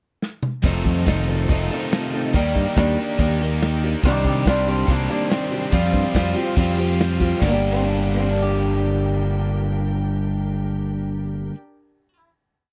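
Folk rock and heartland rock in G minor at 142 BPM, this dusty, wistful piece opens with a drum fill at 0.2 seconds. A punchy, up-front country kit plays a rock groove, with a round, dark fingered bass locked to the kick. A woody, boxy parlour acoustic guitar strums open chord shapes on old strings, and a bright, double-tracked overdriven guitar rings out chords. Together they drive a pre-chorus over F7, Ebmaj7, Cmadd9 and Fsus2, while a smooth bowed string section holds a sustained pad in the background. A clean electric guitar enters at 4.0 seconds with answering blues licks before the band arrives on a final G minor chord at 7.4 seconds, captured in a dry, close 1970s-style studio sound.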